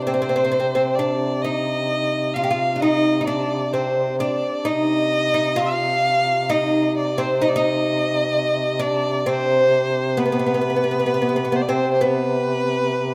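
Steeped in a lush hall reverb on a rough home demo mix, this soulful, longing Arabic maqam ensemble piece in C maqam nahawand moves at 130 BPM in a straight 10/8, with a nasal, bowed violin carrying the melody up front with vibrato, a bright, woody oud plucked with a plectrum on double strings playing a second line, and a mellow duduk holding a low C drone with vibrato and scooped notes, before a new section begins at 4.7 seconds in this cut from a longer work.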